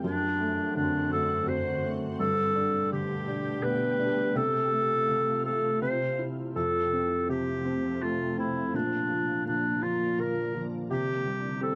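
Recorded with close, detailed microphones and a touch of light reverb, this excerpt from a longer piece is a gentle, sleepy children's lullaby in F major, swaying in 3/4 at 83 BPM. A warm clarinet carries the melody up front throughout, playing solo in a classical style with a distant, roomy tone between D4 and C5. Beneath it, a felt-muted upright piano, also up front, gives soft, intimate accompaniment, its mellow sound joined by audible action noise. The shimmering ambient pad holds sustained chords more quietly, with detuned sine tones, a slow attack, a long release, an ethereal octave-up layer, granular texture, chorus and built-in reverb. The harmony moves from D7/F# and Gadd9 through F/C and C, settles on F and Bb, and reaches Cadd9 at 10.9 seconds.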